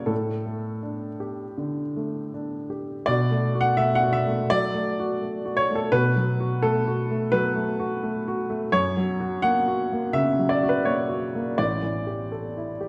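Intimate and melancholic, this neoclassical minimalist piano piece moves in B minor at 84 BPM in 4/4, its pulse loosened by a rubato feel. A single upright piano plays alone throughout, its tone woody, polished and present, with a short sustain. The instrument sits up front, spanning a range from A1 to F#5, while a recital hall reverb with a 1.7-second decay surrounds it in the resonance of a church or concert hall. The harmony opens on A7sus4, settles into Bm7 at 3.1 seconds, turns to F# at 8.7 seconds and returns to A7sus4 near the close. Cut from a longer piece, this 12.9-second passage ends on that suspended chord.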